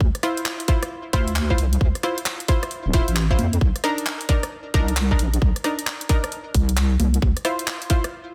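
A deep, saturated square-and-sine wobble bass with chorus and sidechain pumping sits up front in this skippy, late-night two-step UK garage piece at 133 BPM with a 64% sixteenth-note swing, joined by a tight, layered electronic kick, a produced garage kit of congas, handclaps, warm hi-hats and rim clicks with a softly clipped snare in studio reverb, and punchy, bright, detuned sawtooth chord stabs with a filter pluck, chorus and digital delay moving from Dm7 to Cm7 and back, while the bass drops out at 7.3 seconds, all within a digital ambience and a dense, heavily limited modern master.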